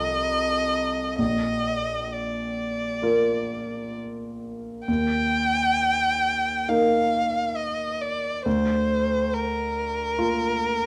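Close, detailed microphones place a violin and a grand piano up front in a recital hall, whose moderate reverb lends the duo a gentle sense of space. This short excerpt from a longer romantic classical piece unfolds at a slow, rubato pace of about 64-72 BPM in 4/4, with a serene, tender mood. The warm, bowed violin carries the melody between Bb4 and G5, and its expressive vibrato and portamento give the line a singing quality with a smooth top. Beneath it, the clear grand piano supplies an intimate, natural accompaniment reaching down to Bb1, with action noise audible from the instrument. The harmony moves from an opening F7 over C to Bb at 1.2 seconds, then to Eb at 4.9 seconds and to Bb over D at 8.5 seconds, with the tuning set slightly low at A4 = 439 Hz.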